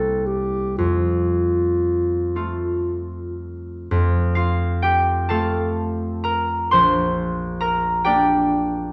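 A dark, soft-attacked clarinet and a ringing concert harp begin together, both up front, in this serene, lyrical romantic duo in F major, cut from a longer piece. The clarinet sings a smooth-topped solo melody in a narrow span from F4 to A4 in classical style. The fingerpicked acoustic harp accompanies across a broad register from Bb1 to C6, and its harmony moves from C7 to F. Set in a slow, rubato 6/8 at around 38-46 dotted-quarter beats per minute, the opening phrase is restated from 3.9 seconds. The clarinet falls away at 3.4 seconds, leaving the harp alone until 8.9 seconds, and it reaches a Gm/Bb chord at 6.7 seconds along the way. A moderate recital hall reverb and a dusky, warm production give the sound a gentle, intimate glow.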